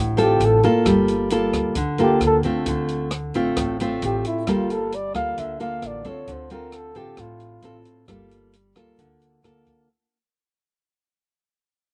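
Wistful and intimate, this bossa nova clip at 133 BPM sets a dark, breathy, close-miked flugelhorn solo with vibrato up front over fingerpicked nylon-string guitar with fresh strings and audible finger squeak, a woody, thumpy pizzicato upright bass and an open jazz kit of hi-hat, boomy kick and rim click with a rolled-off top, all in a dry setting as the harmony sways between Dm7 and Gm9 and the music fades out across its 9.9 seconds.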